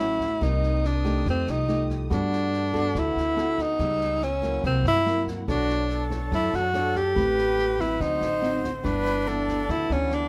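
A breathy, close-miked tenor saxophone carries the melody up front with vibrato, over fingerpicked classical nylon-string guitar, woody pizzicato upright bass on gut strings, and a lush, very quiet bowed string section holding sustained chords. This sunny, sophisticated bossa nova passage is cut from a longer piece, with a distant brushed drum kit of boomy kick, rim click and snare sitting in the background from 0.2 seconds. At 5.5 seconds a soft-attack jazz flute with lifted highs adds an expressive second line, all captured in a small room with the rough feel of a home demo mix.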